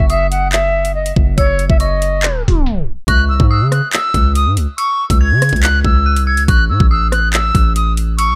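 A reedy, vibrato-laden concert flute carries the melody over an eerie, inharmonic synth bell in the background and a punchy, sine-heavy 808-style bass from the start of this dark, tense half-time drill cut at 141 BPM in C# harmonic minor, with an electronic kit of knocking kick, metallic hats, handclaps and rim clicks up front, delay on the flute and bell, and a tape stop from 2.2 to 3.1 seconds before the chords move from C#m to A.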